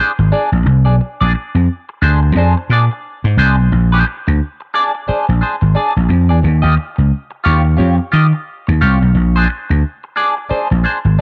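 Funky and energetic, this funk excerpt rides a swung sixteenth-note feel in 4/4, moving from Bb9 to Eb9 at 6.4 seconds and back to Bb9 at 9.2 seconds. A bright, twangy clean electric guitar opens at the start with wah and spring reverb, and a growly, amped vintage slap bass arrives at 0.2 seconds, sitting up front and louder than the guitar. The sound is dry and close, in the manner of a 1970s studio.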